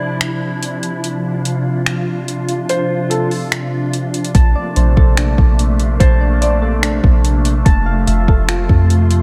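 A felt-muted upright piano sounds brief, mellow phrases with tape echo over a glassy FM pad whose chorused chords pump, and from 0.2 seconds a smooth R&B kit of soft kick, metallic hi-hats and finger snaps joins in this ethereal, melancholic cloud-rap piece at 145 BPM in half-time. At 4.3 seconds a deep, round 808-style bass and soft, triangle-like electric-piano keys with chorus and tape echo arrive as the harmony moves from D minor 9 to B-flat major 9 and then F major 7. The bass and drums sit up front in a light reverb, and the excerpt is cut from a longer piece.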